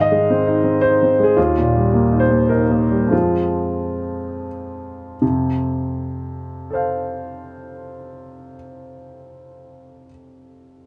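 A dark production with light reverb surrounds a solo grand piano placed up front, its tone warm and a little boxy. This reflective, melancholic fragment of neoclassical minimalist piano unfolds in a rubato three-four, slowing from 0.6 to 5.2 seconds as the harmony moves from Ab through Ebadd9 to Fm. A new section then opens on an F chord, with the piano ranging from Eb2 to F5 until it stops at 10.9 seconds.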